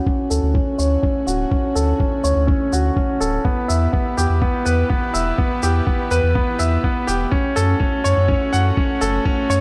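A luminous, hopeful piano-and-strings electronica excerpt in D major at 124 BPM opens with a bright, polished grand piano riff under a filter sweep and delay, while a soft, bowed chamber string section fades in behind it with sustained chords and a sidechain pumping. A muffled, overdriven electronic kick thumps up front from 0.1 s, and a deep, round sine sub bass, also pumping, joins with a light electronic shaker at 0.3 s. The harmony moves from Dmaj7 to Em to F#m in a small, lightly reverberant room.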